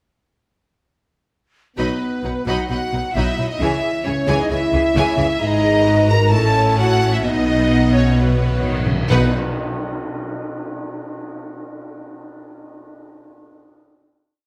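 Driving straight 4/4 at 131 BPM carries this complete, triumphant and soaring heroic adventure cue in B major, with a clear, intense studio violin section playing the melody an octave from an airy flute section in the background, while warm, lush symphonic violins supply a driving ostinato and chords in the rhythm of the tune. Violas add a bowed ostinato and sustained chords, while rich cellos lay down a driving bass ostinato and sustained bass, answering at phrase ends; the double basses double the bass line, and a tight, mellow French horn section holds sustained chords. Dark cymbal swells and tam-tam strokes enter at 5.4 s, round soft-mallet timpani roll in with a fill at 8.2 s, and a band accent lands on a final B chord that rings out in a scoring-stage reverb until 10.9 s.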